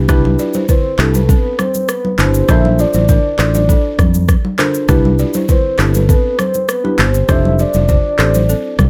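A straight 4/4 groove at 100 BPM drives this joyful, romantic afrobeats clip in C major, where an up-front electronic drum kit with deep kick, handclaps, rim click and shaker plays alongside a punchy, amped fingered bass, while a worn, slightly out-of-tune barky tine electric piano accompanies through a combo amp, a woody, buzzing balafon riff played with soft rubber mallets echoes through digital delay, thin-skinned congas sit bright in the background, and from 0.7 seconds a round, dark octave-layered synth lead with chorus, tremolo and vibrato sings the melody over Cmaj7, Bbmaj7 and F6 chords in light reverb.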